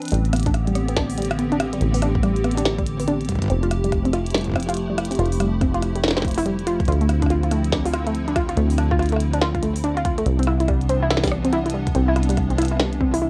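Melancholic and eerie, this short IDM cut from a longer piece moves at 142 BPM with a swung 16th feel in A minor through Am11, Fmaj9, Dm9 and Cmaj9, as a hollow, flute-like pad holds detuned, chorused chords, a dusty, ring-modulated pluck spins lo-fi arpeggios through 12-bit grit and tape echo, a rubbery, resonant acid bass sits dark and up front with tube saturation, and a glitchy kit of clicky hats, rim clicks and a tiny snare is joined by a deep electronic kick at 0.5 seconds, all within a moderate booth ambience on a home cassette recording.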